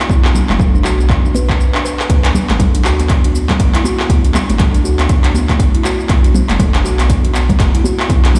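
A punchy, overdriven electronic kick drives this spiritual afro house excerpt, joined by a layered deep house kit of handclaps, shaker and metallic hi-hats in a small-room ambience, with close, dry congas tucked in the background and a swung sixteenth-note feel. A woody, hollow-sounding kalimba plays soft, short arpeggios through a digital delay, pumping with sidechain compression alongside a round, sine-like sub bass that sits low and mellow beneath the Bm, D and Bm7 chords. A brief break falls between 1.6 and 2.1 seconds, and the whole groove carries a light digital reverb that sounds like a big system playing in a bare room.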